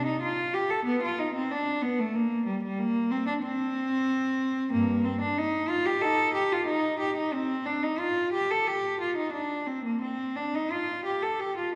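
A single cello carries this brief classical excerpt, a baroque-style suite movement for the instrument alone, its gut strings giving a rich, reedy tone in period style. One player bows throughout from 0.0 to 11.7 seconds, ranging from G2 up to A4. The mood is flowing and introspective, with uneven beats and a rubato feel that lets the line breathe freely. Although the cello sits up front, the listener seems placed further back in a recital hall whose lush reverb lingers around each phrase. The passage is cut from a longer piece.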